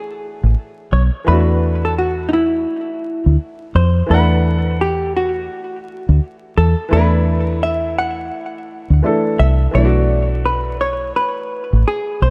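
A dark, clean hollow-body jazz guitar carries the melody with a subtle chorus and delay, starting at 0.0 s beside a woody upright piano with a short, vintage sustain that fills in the accompaniment. From 0.4 s, a round, foam-muted fingered electric bass sits deep and up front, anchoring a smoky, mellow jazz-hop groove at 85 BPM in 4/4 with a swung 16th-note feel, moving from Bm11 to E9sus4 and settling on Bm7 at 9.7 s. Vinyl crackle, light reverb and small room ambience frame this short cut from a longer hip hop piece.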